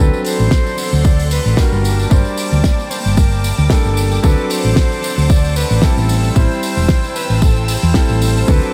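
Nu-disco excerpt at 113 BPM with a sunny, feel-good swing, where a punchy, tape-warm electronic kick and a round, dark hollow-body fingered bass sit up front beneath a damped 70s kit with a fat snare and hi-hat, a background tambourine, a pumping grand piano and rich bowed strings carrying Gmadd9, D7 and Am7, while an airy, mellow, close-miked jazz flute plays the melody through diffuse ambient delay in light reverb.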